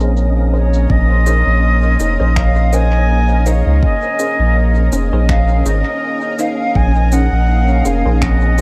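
An echo-heavy mix with light reverb opens this meditative, spacious ambient dub excerpt, set at 82 BPM in 4/4 with a gentle 16th-note swing in Bb minor, resting on a single Bbm11 chord. A round, sine-like sub bass sits up front beneath a soft, organ-like additive pad whose detuned, evolving chords carry ensemble chorus and built-in reverb, while a muted, filtered dub chord stab sounds in the background through phaser, lush chorus and dub echo. Mellow, close-miked vibraphone arpeggios played with soft mallets ring through an analog delay, and an airy, breathy wind-like noise texture hovers on Db4. A distant silver concert flute enters at 0.5 seconds with an expressive, vibrato-laden line between Db5 and Ab5, trailed by its own analog delay. Tape-tinged electronic shaker and finger snaps, low-pass filtered and sent through dub echo, are joined at 0.9 seconds by a deep electronic kick drum sitting in the background.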